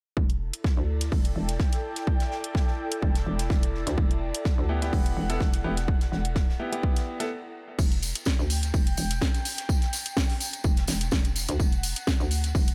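A hollow, bouncy FM bass with overdrive and sidechain pumping sits up front in this aggressive, gritty bass house excerpt in E minor at 126 BPM with a light swing, driven by a punchy overdriven electronic kick and a layered house kit with a cracking snare and crash, both re-recorded in a large room, plus a soft-mallet acoustic kit with dark cymbals and a fat snare lying far back. An airy, breathy detuned pad with chorus and phaser pulses underneath, and a clear, intimate baby grand piano adds short stabs with tape echo from 4.7 to 7.3 seconds. After a brief stop, a jingly, bright tambourine joins at 7.8 seconds as the groove resumes, all bathed in studio reverb.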